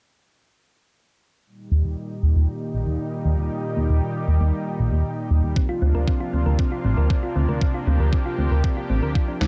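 A straight 4/4 synthwave pulse at 117 BPM sets a moody, nocturnal tone in this brief cut from a longer piece, as a lush, detuned unison pad with 12-bit sampler grit and sidechain pumping enters at 1.5 seconds, joined at 1.7 seconds by a glossy, chorused pulse-and-sawtooth bass that sits up front, both moving through filter sweeps across Eb and then Bbadd9. At 5.6 seconds a round, tine-like FM pluck adds gentle, dark arpeggios with chorus and digital delay, while an overdriven, thumpy electronic kick joins, its sampler-style punch carrying a large-room character. A medium-tuned, overdriven snare lands only at 9.4 seconds, and the mix stays dry and close throughout.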